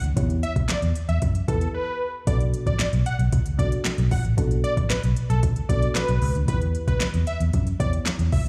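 A straight 4/4 dance-pop groove, confident yet bittersweet, rests on an overdriven electronic R&B kit of handclaps, hi-hat, soft kick and fat snare, set up front beside a dark, foam-muted fingered electric bass that pumps to the sidechain. A gentle, nasal pluck with chorus and slapback echo sits low in the mix beneath a thick, detuned unison sawtooth lead that carries the melody with vibrato and digital delay, while the harmony moves from Em to Bm7 after a brief break at 1.7 seconds and returns to Em at 6.5 seconds. Cut from a longer piece and heard through a venue's PA, it carries only a touch of club reverb.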